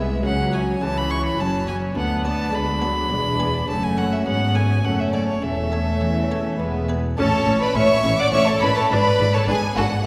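Brilliant and festive, this short baroque-style concerto excerpt in A major moves at 104 BPM in 3/4, with a rich, vibrato-laden solo violin singing alongside a clear, intense violin section on the melody, a focused second violin line, smooth violas, dark, soft-edged cellos in the background, bowed double basses, and a muted, lute-like buff-stop harpsichord quietly filling in, all heard from further back in a reverberant concert hall as the harmony turns from C#m toward A by 7.2 seconds.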